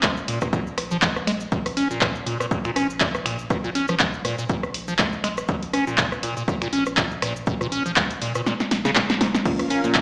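A driving 121 BPM acid house groove in Bb minor swings its 16ths, with an up-front punchy analog drum machine of overdriven snare, handclaps, finger snaps, hi-hat, rim click and crash riding over a tape-warm electronic kick, while a grainy cabasa sits in the background. A squelchy, resonant liquid acid bass riff with phaser, tape echo and a filter sweep pumps against the kick over a thick sine sub bass. The kick drops out for a drum fill from 8.5 to 9.5 seconds, and at 9.5 seconds a lush vintage string machine and a dark, detuned chord stab enter, all set in a bare-room sound with plate reverb and a small-speaker edge.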